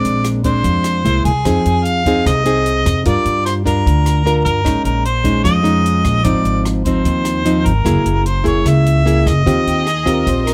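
A mellow, vintage-tinged harmonica with light vibrato and plate reverb carries the jazz melody up front from the start of this breezy, relaxed bossa nova excerpt at 150 BPM. It plays over fingerpicked classical nylon-string guitar with audible finger squeak, dark, woody pizzicato upright bass, and a dry, compact cocktail drum kit of hi-hat, rim click and punchy kick, as the harmony drifts through chords such as Bb9, Fm7, Bbm11 and Gb9 before reaching Eb69. At 9.7 seconds a lush, bowed violin section slips in behind as a smooth second line, all captured with close, detailed microphones and light reverb.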